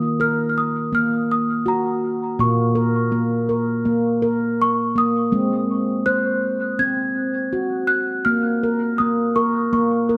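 Meditative and gentle, this short world-music passage, cut from a longer piece, drifts along at 82 BPM in 4/4 with a light sixteenth-note swing. A handpan plays arpeggios across its low and middle range, its stainless-steel tone dark, smooth and ringing, sitting up front and slightly louder in the balance. Above it, a worn celesta carries the high melody with a sweet, bell-like, delicate voice, mellowed by soft felt hammers and a touch out of tune, with a boxy small-room character softened by a diffuse ambient delay. Both instruments play together from the start through 10.2 seconds, moving through Ebm, Bbm and Ab before settling back on Bbm. A wet echo-chamber reverb gives the whole recording a lush, spacious glow.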